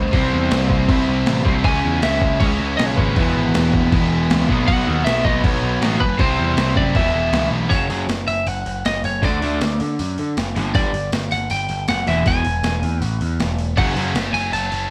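A twangy, slightly broken-up lead guitar melody and a growling, overdriven bass kick off this rowdy, rebellious punk rock passage, joined by two crunchy picked guitars riffing in the background, a double-tracked high-gain guitar that drops out at 7.7 seconds and returns at 13.8, and a gritty, up-front sampler-style drum kit with a thumpy kick and high-tuned snare whose kick and snare fall away at 7.5 seconds, all played like a live band in one room with light reverb.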